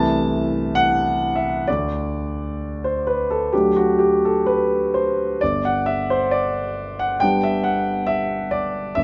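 Lyrical and warm, this brief excerpt from a romantic classical character piece for solo piano moves with a flexible, rubato feel in a four-beat metre. The concert grand has a warm, open tone with a deep bass, spanning from G1 up to A5, and it sits up front in the mix. A moderate reverb, like a large studio, adds a sense of space, while the top end stays soft and rounded. The harmony opens on Am/C, moves to D at 1.7 seconds, and settles on G at 5.4 seconds, giving the phrase a sense of arrival before the clip ends at 9.0 seconds.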